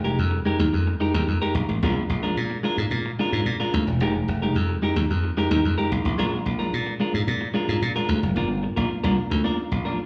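Soaked in a large studio reverb yet carrying the small-room feel of a band playing live together, this driving, sultry disco fragment at 110 BPM in straight 4/4 pairs a punchy, up-front slap bass with a twangy, compressed clean electric guitar picking bright accompaniment over Fm11 and Bb7 before moving to Gm7 at 8.4 seconds.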